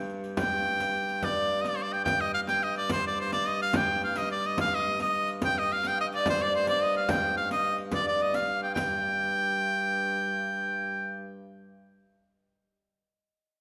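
A driving 6/8 lilt at 143 BPM in dotted quarters sets this brief, ancient-sounding medieval dance in motion, cut from a longer piece, with a warm, close frame drum entering at 0.4 seconds beside a riq of dark jingles and hard hands in the background, both stopping at 8.9 seconds. Up front, an edgy folk-style shawm carries the solo melody between C5 and G5, while a fingerpicked concert harp rings softly behind it on a second line in the same range, over a smooth, even drone on G2 from a single wheel-bowed hurdy-gurdy. A wet scoring-stage reverb with a 1.8-second tail surrounds the ensemble as the opening material repeats and gives way to a short contrasting passage near the end.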